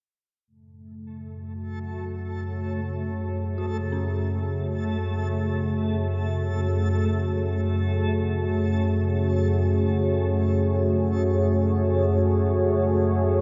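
Floating in free time, this ominous, vast stretch of dark ambient drone is cut from a longer piece and rests on a single F#madd9 chord, tuned to A4 = 436 Hz. At 0.9 seconds a deep rumbling drone sits up front, its slow-attacking sawtooth and triangle tones colored by a phaser and built-in reverb, while a moody, detuned analog pad holds sustained chords above it with a sub octave and chorus. A reversed, granular texture enters at 1.7 seconds, a bright, dreamy swell with its own reverb. From 3.6 seconds a very quiet FM synth bell traces eerie, inharmonic arpeggios, its fast attack decaying into a mellow, chorused tail. The whole sits in a vast, echoing cathedral space, and the synth texture fades out across the passage.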